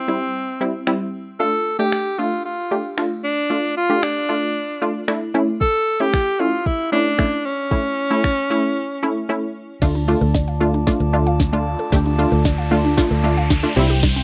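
A lightly reverberant, rough home-demo sound frames this energetic, bittersweet dance-pop excerpt at 114 BPM, where a bright, vibrato-rich alto saxophone with delay carries the melody over a lush detuned sawtooth pluck and a tape-warm R&B drum kit with snaps, until the saxophone stops at 9.6 seconds and, from 9.8 seconds, a drum-fill build-up brings in a smooth brass ensemble, a hollow chorused square-wave pluck arpeggiating in the background and a dark, foam-muted fingered bass, all pumping against the kick, with an electronic riser rising from 11.5 seconds and a jingly tambourine in the closing moments.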